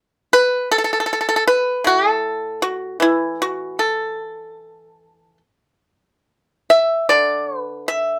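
A solo pipa opens at 0.3 seconds and carries this brief Chinese traditional piece alone, its plucked strings sounding elegant and pastoral. The playing is rubato, loosely centred around 70-79 BPM in 4/4, so the pulse bends freely. Plucked with fingerpicks, the instrument has a dry, percussive attack and sits up front, ranging from A2 up to E5. A light reverb surrounds the recording, lending a touch of space to the otherwise close, acoustic tone. The passage is cut from a longer piece and ends at 8.2 seconds.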